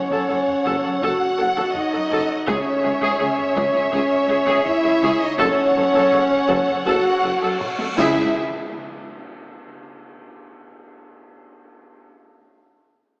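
Lush, vibrato-rich violins open with the melody over a soft-attack second violin line, up-front clear violas and a dark, distant French horn section holding chords that move between F#m and C#m, and this dramatic, epic orchestral film-score cut at 82 BPM gathers a close cello section, a punchy tuba, very quiet double basses and compressed, saturated taiko beneath, with dry timpani touches from 2.5 seconds and a huge cymbal swell from 7.1 seconds leading into an impact at 8.4 seconds, inside a wet concert-hall reverb with a small-speaker sound.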